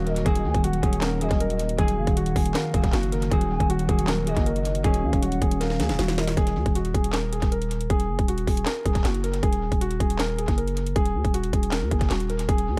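A half-time trap groove at 157 BPM in Eb minor drives this menacing, eerie hip hop excerpt, with an up-front electronic drum kit of hard-clipped kick, sharp snare, handclaps and metallic hats entering at 0.1 seconds beneath a growling, buzzy, saturated 808-style bass that holds to the end, and a drum fill closing the opening half at 5.6 seconds. A dark, mellow, vintage-toned grand piano carries the melody through tape echo and a low-pass filter, joined by a ringing, fingerpicked concert harp in the background until 9.0 seconds. Until 6.4 seconds, a gliding, vibrato-laden portamento lead with chorus adds a second line high above, over a very quiet, detuned analog pad of sustained chords, all set in an echo-heavy digital ambience.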